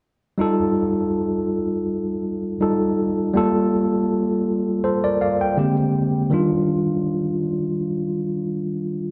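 R&B fragment at 81 BPM with a gentle sixteenth-note swing, where a worn, slightly out-of-tune tine electric piano plays alone and up front from 0.4 to 9.1 seconds, lightly overdriven as if through built-in speakers, moving through F9, Gm9, Bb13 and Ebmaj9 chords in a lush hall reverb that gives this short excerpt a sensual, longing mood.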